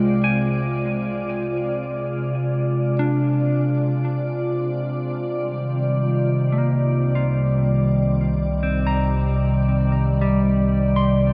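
In free time, this spacious, serene ambient passage, cut from a longer piece, floats a glassy, ethereal FM pad holding sustained chords up front through ensemble chorus, while a mellow electric guitar plays dark, clean, fingered arpeggios through phaser and tape echo and fades in from 4.7 seconds, all above a deep, ominous rumbling drone, the whole bathed in a huge ambient reverb as the harmony moves from a rootless Bb7/C to Cmadd9.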